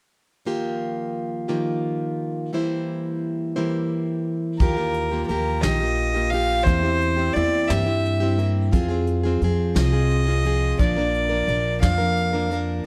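A bright, full-bodied picked steel-string acoustic guitar opens alone at 0.5 seconds, its finger squeak audible as it moves through Ebadd9 and C7/E in a slow, peaceful 6/8 folk lilt at 58 BPM in Eb major. At 4.6 seconds a nasal, earthy bowed fiddle with tape echo takes the melody, joined by woody pizzicato upright bass and a soft brush kit of hi-hat, tight kick and medium-tuned snare in a small room, as the harmony moves on to Fm and Bb. The dark, dry production keeps the pastoral duo-or-small-band sound intimate and up close in this excerpt from a longer piece.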